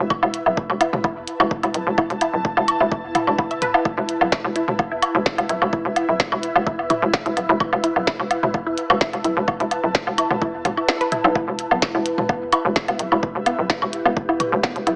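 A hollow, bouncy FM bass and an ethereal, airy pad open this excerpt of quirky, cool minimal techno in E minor at 128 BPM in a straight 4/4, with both parts pumping against the sidechain from 0.0 seconds. The bass sits up front with a fast, knocking attack, while the mellow pad drifts high above on slow-attack detuned layers softened by ensemble chorus and its own reverb. A punchy, tape-warm electronic kick and a minimal click kit, with a tiny snare and clicky hats placed up front, lay down the groove, joined by layered electronic woodblock and toms thrown into dub echo. A juicy, squelchy sawtooth blip pluck carries the riff through a moving notch filter, chorus, phaser and tape echo, pumping along with the bass and pad, while a very quiet, swarming sine drone evolves with tense granular shimmer in the background. The kick briefly drops out from 10.9 to 11.4 seconds before returning, and the whole track carries light reverb and a small-speaker sound.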